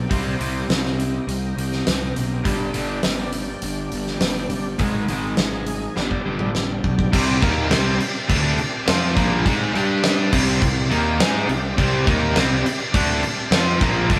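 A gritty, overdriven tonewheel organ and a dark, round fuzz bass open together, the organ's sustained chords turning through a slow rotary speaker and chorus vibrato. A moment later a cranked stack guitar riff and a big rock drum kit come in. This driving, aggressive hard rock passage, cut from a longer piece, moves at 103 BPM in a straight 4/4 over Cm, G5 and Ab5. The drums sit up front in a big room with a fat snare, tight kick and rolled-off top, while the bright, double-tracked stack guitar carries spring reverb from the background. After a drum fill from 6.0 s, a distorted, compressed second guitar, also double-tracked, adds its own riff at 7.1 s as the music settles in C minor, with the band playing live in one room under moderate studio reverb and the punchy bass pushing beneath the organ's thick haze.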